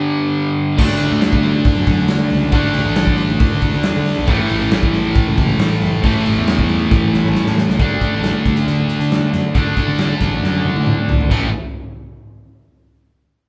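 Classic rock at 137 BPM with a sunny, confident mood: a bright, overdriven, double-tracked electric guitar opens alone on a riff at 0.0 s before fuzzy picked electric bass and a big, dark, punchy acoustic drum kit join at 0.8 s, moving through G5, D5 and A5 power chords with drum fills leading into a new section at 7.8 s, all captured as a band playing live in one large studio room with moderate reverb, in this excerpt cut from a longer piece.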